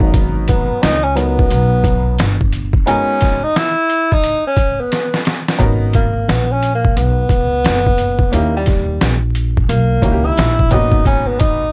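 A gritty, compressed sampler-style drum kit with a thumpy kick and a medium-tuned snare opens this smoky, cool jazz-hop excerpt at 88 BPM in G# minor, sitting up front alongside a woody, slightly detuned vintage upright piano and a pizzicato upright bass with steel strings. The piano comps on lush minor chords, moving from G#m11 to G#m9, while the bass holds down the low end and the pitched-down, tape-toned drums carry a swung 4/4 hip hop groove. At 0.5 seconds a mellow, breathy tenor saxophone enters with a jazz-style melody, distant and roomy in tone yet placed up front in the mix. A drum fill at 4.9 seconds leads into the second section at 5.6 seconds, where the saxophone takes a solo over G#m11, a tense D#7b9 and a return to G#m11. Light reverb and a layer of vinyl crackle give the recording a dusty, late-night atmosphere, tuned slightly flat to A4 = 439 Hz.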